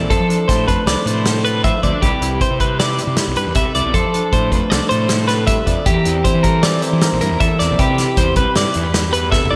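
Math rock with a midwest emo tint, this wistful, bright excerpt moves at 156 BPM in a straight 5/4 in C major, cycling through F6, Cmaj9 and C7/E chords. An up-front, compressed twelve-string electric guitar plays clean picked arpeggios with warbly pitch drift, digital delay and slapback echo, over a dark, mellow electric guitar's fingered accompaniment and a round, fuzz-overdriven fingered bass. A loose indie drum kit with a punchy kick and medium-tuned snare drives the piece, rounding off with a fill at 9.3 seconds, all set in a lush hall reverb that gives a big arena sound.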